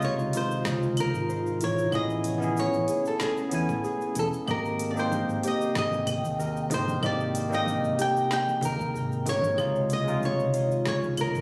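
This sunset chillout excerpt opens with a flamenco guitar on fresh strings, fingerpicking the melody up front, its tone roughened by vintage 12-bit sampler grit and trailed by digital delay. Around it, a bell-like tine electric piano plays clean accompaniment with its own delay, a concert harp rings out thumb-plucked arpeggios in the background, and a round, dark fretless bass sits under a lush chorus. An ethereal, airy pad with a slow attack, ensemble chorus and built-in reverb settles in behind at 0.4 seconds, and a house kit of woody snare, smooth hi-hat, cabasa and claves is joined at 0.7 seconds by a deep electronic kick. At 5.1 seconds, soft-handed congas with a thin, damped skin add a vintage, band-limited texture. The harmony drifts from Dbmaj9 through Amaj9 and Abmaj9 back to Dbmaj9 for a sunny, smooth mood, heard through a phone capture in the room with light ambience, studio reverb and compression.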